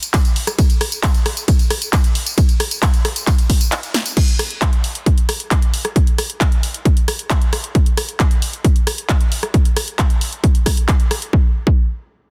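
A heavy, overdriven electronic kick drives this bittersweet, emotional trance cut at 134 BPM in a straight 4/4 alongside an up-front, layered big-room drum kit of crash and ride cymbals, handclaps, hi-hat, rim click, tambourine and a punchy, softly clipped snare, with the opening drop giving way to a brief break and a drum fill at 3.9 seconds before the kit stops at 11.3 seconds, all in a dry, dense and heavily limited modern master.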